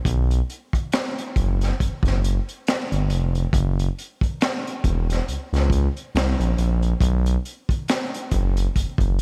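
A smooth, gliding synth bass anchors this sultry, soulful neo-soul R&B cut from a longer piece, its wave-folded sawtooth-and-triangle tone sitting up front with a fast attack, sustained notes, vibrato and portamento. Alongside it, a crunchy breakbeat kit recorded in a small room and also placed up front adds gritty, saturated colour, with a punchy kick, a high-tuned snare, hi-hat and finger snaps, all dark and rolled off at the top. A swung sixteenth-note feel and light reverb give the whole passage a relaxed, late-night glow.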